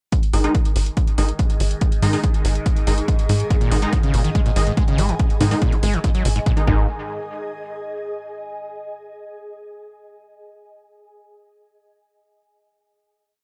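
A squelchy, distorted acid bass line with accents and slides cuts in at 3.5 seconds over a punchy four-on-the-floor kick, metallic hats, a tight off-beat sequencer bass and aggressive detuned rave stabs that pump with the sidechain, while an ethereal phased pad and a very quiet overtone-sweeping drone hover beneath this hypnotic, driving 142 BPM peak-time techno piece, whose dry, gritty groove gives way to a final note lasting until 8.6 seconds.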